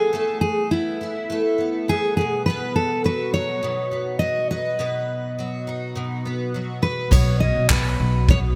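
A dark, full-bodied fingerpicked steel-string acoustic guitar carries the melody in this heartfelt, easy-going acoustic pop excerpt at 103 BPM in 4/4, with finger squeak audible over a bright, shimmering, octave-doubled twelve-string guitar that is double-tracked beneath it. The guitars move from Asus2 to B, and at 7.1 s a woody pizzicato upright bass and a soft brush kit enter on Badd9, the kit bringing a punchy kick, crash cymbal and handclaps with gated reverb. Light reverb and studio ambience frame a bright 1980s-style digital production that keeps every part up front.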